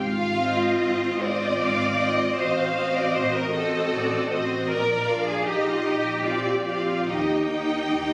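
Heard as a phone recording in the room, this short excerpt from a longer classical piece carries a moderate scoring-stage reverb, a club-like ambience and compression around a slow, tender romantic movement for string orchestra in Eb major, moving in 3/4 at 70-79 BPM with a rubato feel. The cello section sits up front, clear and focused yet distant in character, carrying the bass line with vibrato from the very start, while a rich, smooth-topped double bass section underpins it with lush bowed tone. A second violin line, rich and focused, murmurs in the background from 0.0 seconds, and at 0.4 seconds the melody violins enter with a soft attack, expressive vibrato and lush ensemble bowing. The viola section joins at the same moment with an intense, close accompaniment. The harmony drifts from Fm7/Ab through Adim7 before settling through Bb and Bb69 onto Eb at 7.1 seconds.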